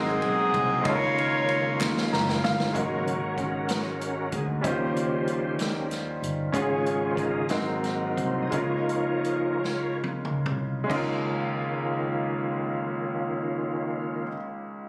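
A reedy tonewheel organ with key click, slow rotary speaker and chorus vibrato takes a solo from 2.7 to 10.9 seconds in this jubilant, hopeful slow gospel excerpt in 6/8 and D-flat major at 44-64 BPM, after a brief opening melody from an up-front, smooth-topped saxophone section punctuated by crisp group handclaps, while a brilliant, intimate grand piano with audible action noise, a round and punchy fingered electric bass and a distant, roomy swinging big-band drum kit with a boomy kick support the solo, the tempo slowing from 6.5 seconds, all heard through lush hall reverb in a phone recording made in the room.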